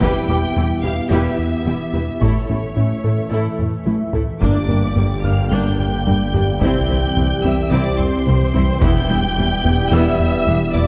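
A rubbery square-wave bass riff drives this brooding, vast hybrid orchestral and electronic film cue at 109 BPM in 4/4, under a lush violin melody, a clear second violin line, warm violas, cellos, double basses, mellow French horns, a hollow flute-like pad, a soft round pluck arpeggio, close and dry taiko drums, and a very quiet bright piano texture entering at 0.3 seconds. After a taiko fill, a dark trombone section and a menacing, detuned saw bass with a filter swell join at 4.4 seconds as the chords move from Em through A, Gm and C back to Em. A concert hall reverb gives the dark production its depth in this excerpt from a longer piece.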